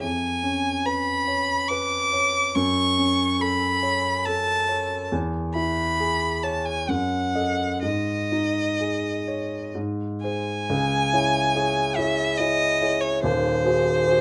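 Set close and up front in a light reverb, this elegiac, solemn romantic duo in C# minor moves in a rubato 3/4 at 62-72 BPM, with a rich solo violin singing the melody with smooth, even bowing and vibrato over a dark, mellow baby grand piano whose vintage accompaniment rings with long sustain, the passage turning to a new section at 10.7 s before this cut from a longer piece ends at 14.2 s.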